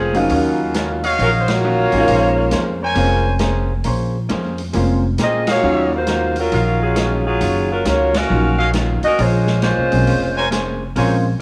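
A mellow, vibrato-laden saxophone section carries the melody up front in this brassy, dramatic big band swing excerpt in Bb minor at 135 BPM, moving between Ebm9 and Bbm9, as a tight trumpet section adds stabs from 1.0 s, a woody pizzicato upright bass anchors the low end, a smooth vintage baby grand piano and a dark, clean hollow-body jazz guitar sitting in the background fill out the harmony, and a swinging drum kit with hi-hat, ride cymbal and snare drives the band through accents at 1.4, 5.4 and 8.1 seconds, all bathed in spring reverb with a cassette-tape home-recording character.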